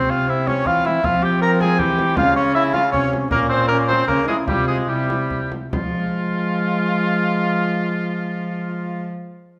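A straight triple metre drives this courtly yet rustic dance in the renaissance consort style, set in F harmonic minor at roughly 139 to 160 BPM. Partway through, the pace slows, reaching a new section at 5.7 seconds that settles on F minor after a progression through Db major seventh, Bb minor and a suspended C. Up front, a warm oboe with light vibrato and a smooth top carries the melody, while the cor anglais shapes a warm second line beneath it. A clear trombone fills in the accompaniment, and a single bowed cello anchors the bass with a rich, nasal, reedy gut-string tone. A deep, large frame drum played with soft hands joins at 0.5 seconds and drops out at 5.9, its sound compressed and saturated. The recital hall reverb lends the consort a wet, resonant space, in this short section cut from a longer piece.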